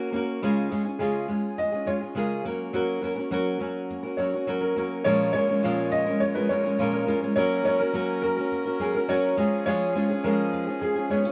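This sunny, heartfelt pop excerpt moves at 104 BPM in Db major, built on an up-front fingerpicked steel-string acoustic guitar with a full-bodied nylon-string guitar playing arpeggios in the background. A dark, woody upright piano carries a mellow, vintage-toned melody from 1.0 seconds. A reedy accordion adds clear sustained chords from 5.1 seconds as the harmony turns to Bbm7, all set in light reverb.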